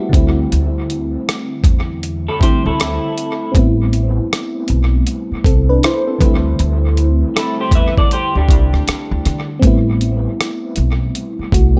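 An echo-heavy mix in a digital ambience frames this sultry, soulful neo-soul R&B excerpt at 79 BPM with a swung 16th feel, where a round, soft FM electric piano with chorus, phaser and dub echo moves between D9sus4 and Am9 over a woody, dark pizzicato upright bass and a gritty, compressed sampler-style drum kit of thumpy kick, hi-hat and rim click touched with dub echo, while a slightly broken-up, lo-fi electric guitar through a small old amp adds a lush-chorused second line from 2.3 to 9.5 seconds.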